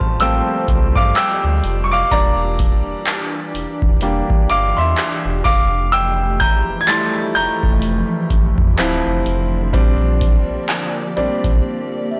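A bright, brilliant grand piano leads this sensual, moody contemporary R&B excerpt, taking a solo across its full 12.2 seconds at a slow 63 BPM with a swung sixteenth-note feel. Beneath it, a glassy, ethereal FM pad holds sustained chords with ensemble chorus, built-in reverb and sidechain pumping, giving a vintage, warbling haze. A booming analog drum machine with a deep kick, metallic hats and handclaps sits up front alongside a full sine-and-triangle sub bass with an added octave. A large celesta adds a bell-like, delicate shimmer very quietly. The harmony moves through Gm11, Em7b5, Fmaj9, Dm7 and Bb6, and the drums and bass drop out at 11.6 s for a brief break. The whole recording sounds blown-out and overdriven, with a digital ambience around it.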